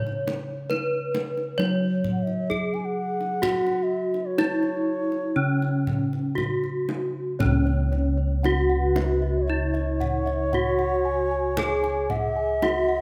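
Closely miked and lightly reverberant, this short cut from a longer Javanese gamelan piece has a shimmering, ceremonial mood, moving at 57-70 BPM in 4/4 in C# slendro. Up front, a dark, smooth bronze metallophone struck with a horn mallet carries the melody with the beating shimmer of paired tuning, set over round, bronze bossed gongs in the bass, while an airy bamboo bansuri adds an expressive second line with vibrato and a soft attack. A deep kendang played with hard hands sounds distant, as if in a large room, and at 7.4 s a second ringing metallophone, struck with a wooden mallet, enters with high arpeggios.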